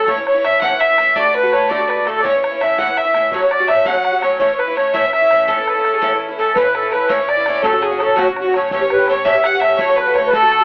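Heard through a narrow telephone-like filter with a moderate studio reverb, this cheerful, lively Celtic jig in 6/8 is a short cut from a longer piece. A reedy, sweet accordion with light tremolo tuning carries the melody up front, while a rich, intense bowed fiddle with light vibrato and a smooth top plays a second line. A metallic, double-strung Irish bouzouki supplies picked accompaniment over chords moving through A, D and F#m, with an open, boomy bodhran sitting in the background and a woody, thumpy pizzicato upright bass joining quietly at 6.6 seconds.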